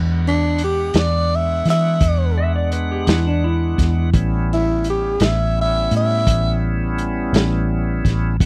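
Slow blues in a 12/8 swing-free straight feel, this short cut from a longer piece sounds gritty and rollicking, moving from an E9 chord to A9. A raspy, breathy tenor saxophone carries the melody up front from 0.3 to 6.6 seconds, its subtone and scooped notes given a slapback echo and a jazz-styled vibrato. Underneath, a round, foam-muted electric bass sits close and punchy, while a vintage small-room, lo-fi acoustic drum kit with a tight kick, medium-tuned snare and hi-hat enters at 0.6 seconds with a muffled, rolled-off top. A reedy tonewheel organ holds sustained chords through a slow rotary speaker with audible key click, and a clean, dark lap steel guitar slides in with a brief second line from 2.4 to 4.3 seconds. The recording is dry and close, with a 1970s studio character.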